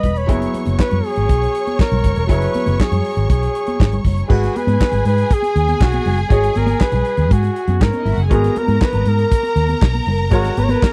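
Disco in G# minor at 120 BPM, driving and glamorous, where a breathy, smooth-topped flugelhorn carries the melody up front over a growly, punchy fingered bass and a soul drum kit with dark cymbals, tight kick and handclaps, while a lush, distant bowed string section adds a second line, a clear baby grand piano with audible action noise accompanies in the background, and ringing high-tuned congas sit behind, all captured in a dry, close 1970s-style studio sound that moves from F#9sus4 to G#m9 at 4.3 seconds.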